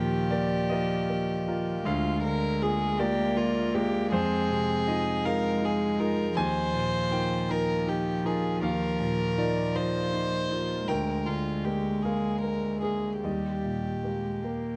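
Neoclassical piano and strings in Eb major, intimate and tender, drifting at a rubato 53 BPM in 6/8, where an up-front solo violin carries the melody with a soft-attacked, floating sul tasto tone, a single cello sings a pure second line beneath it, and a clear, natural concert grand with deep bass and audible action noise gives close-miked accompaniment through Ebsus2, Bb7/D and Fm7 before settling on Eb at 13.2 seconds, all in light reverb in this short excerpt from a longer piece.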